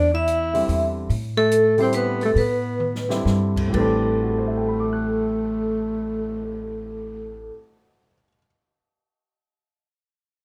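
A bright, ringing vibraphone melody with motor vibrato opens this intense, spiritual modal jazz excerpt in A dorian over an Am11 chord, alongside a whispered, breathy subtone tenor saxophone second line with scooped notes and a woody, thumpy gut-string upright bass, joined within a second by a small-room drum kit with dark cymbals and a boomy kick and a polished baby grand piano, swinging in 3/4 at 124-146 BPM with light reverb, as the tempo slows from 1.1 to 3.7 seconds and a drum fill arrives at 2.8 seconds.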